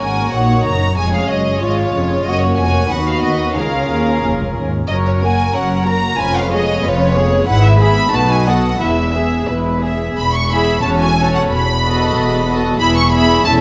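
The first violins lead, up front and close, carrying a pure, floating melody with a soft attack and the veiled sul tasto tone, ranging from C#5 up to C#6 in this lively, spirited classical-period movement for string orchestra at 92 BPM in 2/4. Beneath them the second violins add a warm second line, while the violas fill in a woody, vibrato-rich accompaniment with a darker hue. The cellos and a distant, lush double bass section share the bass, the cellos sounding rich and floating, the basses shadowy and woody. The harmony begins around F# before settling into E major from 7.5 s, moving through B7 toward a cadence on E at 12.8 s. A moderate scoring-stage reverb gives the ensemble a spacious depth through this short passage cut from a longer piece.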